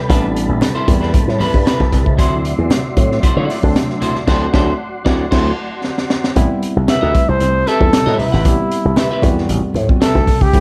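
A gritty, saturated breakbeat kit sits up front with dark cymbals, a high-tuned snare and a punchy kick, framed by light reverb in this hypnotic, driving funk piece in A dorian at 115 BPM. Underneath, a slap bass growls through an envelope filter, while a clean semi-hollow electric guitar plays accompaniment and a worn, slightly out-of-tune tine electric piano adds stabs heard through its built-in speakers. A soft, flute-like tonewheel organ with chorus vibrato and key click holds sustained chords until 6.3 seconds, and low-tuned congas sound distant and very quiet in a large room. The harmony moves from Am9 to D9, with a band accent and a drum fill leading into the second section at 6.4 seconds. From 6.9 seconds a mellow trumpet takes an up-front, jazz-style solo with light vibrato, soft attacks and scooped notes, carrying the groove to the close of this cut from a longer piece.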